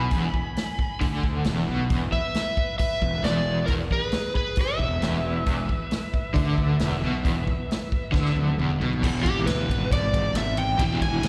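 Heard live through a venue's PA with a recital-hall reverb, this swaggering, driving blues rock and southern rock power-trio excerpt moves at 135 BPM in E mixolydian. A dark, overdriven slide guitar carries the melody up front, soaked in plate reverb with slapback and tape echo, while a smooth lead guitar plays a second line in the background until 8.5 s. Beneath them, a double-tracked, hollow-bodied semi-hollow guitar plays a tremolo-tinged riff, a growly fuzz bass holds the low end, and a vintage drum kit with a punchy kick and medium-tuned snare drives the beat; after a drum fill from 8.1 s, the slide guitar breaks into a solo at 9.0 s.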